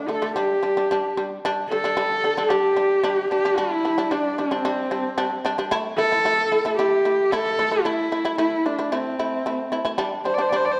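A husky horsehead fiddle carries the melody with vibrato and portamento, its bowed horsehair strings sounding focused and up front in this galloping, vast Mongolian folk piece at 112 BPM in 4/4, set in the G zhi mode. Beneath it, a powerful, buzzing shamisen plucks percussive arpeggios in a lower register. Both play throughout the roughly 11-second cut from a longer piece, and the dark production sits in the lingering reverb of a recital hall.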